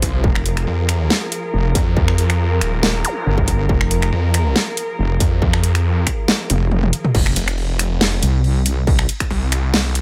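A snarling, distorted saw bass growls up front alongside a saturated, chorused wobble bass in this aggressive, menacing heavy wobble dubstep fragment, driven by a distorted electronic kick and a layered drum kit with a huge snare and metallic hats, while a bright, intense bowed string section sustains pumping, filtered chords until 7.1 seconds, a brief electronic zap flickers in the background, and the kick drops out at 6.3 seconds ahead of a drum fill at 6.5 seconds.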